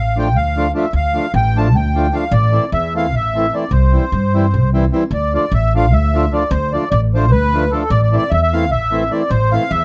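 Festive and exuberant, this cut from a longer Balkan wedding-band piece in 7/8 runs at 301 BPM in eighths, with a sweet, reedy lead accordion carrying the melody through a light tremolo tuning and a plate reverb. A second, hollow and close-miked accordion joins at 0.2 s with full accompaniment over Dm, Am and C, while a woody, growly pizzicato upright bass sits up front. The phrase repeats at 5.1 s, and the whole has a dark production with a light room reverb.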